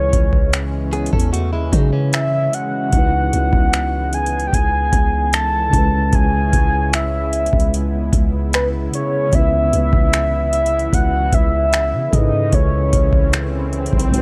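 Contemporary R&B at 75 BPM in C# minor, sensual and moody, where a round, octave-layered synth lead carries the melody with chorus and tape echo over a mellow tine electric piano, a smooth analog pad with chorus and tremolo in the background, a deep, boomy 808-style bass and a booming, overdriven analog drum machine of finger snaps, metallic hi-hat and kick drum, while a bright, clean electric guitar adds arpeggios from 0.9 to 2.9 seconds and an electronic swell enters at 13.2 seconds, all in a dry, gritty recording moving from C#m11 to C#m7 to Amaj7/C#.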